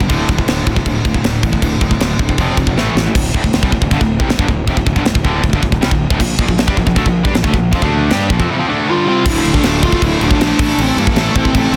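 The tight metal drum kit stands up front in this dark, aggressive heavy metal excerpt, its tight kick, medium-tuned snare and bright china and crash cymbals driving a straight 4/4 at 157 BPM in D minor, with a short drum fill at 2.8 seconds. Behind it, three picked guitars play the riff throughout: a bright overdriven electric guitar, a distorted guitar with a similar sheen, and a very quiet, double-tracked garage guitar with a warm, raw tone. A growly, fuzz-laden fingered bass sits in the background beneath them, while the harmony moves through power chords on D, F, A and Bb. At 8.9 seconds a bluesy lead guitar enters with a dark, distorted tone and digital delay, carrying the melody as the chords shift to D minor and A minor. The sound is dry, with little reverb, and the master is dense and heavily limited.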